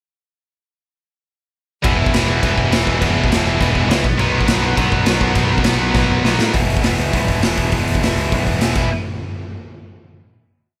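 A raw, lightly reverberant punk rock mix puts a gritty, saturated garage drum kit up front in a bright stone room, its punchy kick and snare driving a fast straight groove at 204 BPM in E major. Behind it, two tight distorted guitars drive quarter-note barre and power chords. A double-tracked high-gain guitar thickens them until a drum fill carries the rowdy, upbeat riff into the outro at 6.5 seconds, while an overdriven, growling picked bass pushes eighth notes underneath. The E-to-B riff returns to E for the outro, and the piece closes on a final hit at 8.9 seconds.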